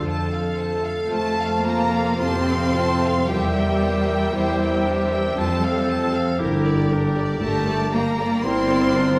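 Elegiac and solemn, this slow romantic orchestral passage in 3/4 moves with a rubato feel. A smooth, vibrato-rich violin section carries the melody over a close, expressive double bass section, a dark, distant bassoon, a focused viola section in the background and very quiet, ringing fingerpicked harp arpeggios, while a warm clarinet and a soft-attack oboe add second lines. At 1.1 seconds an intense, clear second violin section and a mellow, hollow, airy flute join high above, with very quiet vintage-toned French horns holding sustained chords and a distant cello section deepening the bass, all bathed in the wet reverb of a recital hall.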